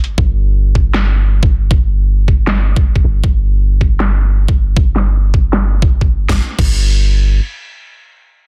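A deep, mellow 808-style sine bass with a fast attack and long decay opens this bright, lush future bass excerpt, pumping against the sidechain alongside a layered dubstep kit of huge snare, metallic filtered hats and crash cymbal, with a filter sweep running over the drums. A knocking, tape-warm electronic kick joins up front at 0.2 seconds, driving a half-time feel with a light swing and a touch of small-room reverb. The drums drop out at 6.7 seconds and the bass rings on until 7.4 seconds, all within a dense, heavily limited modern master that stays mostly dry.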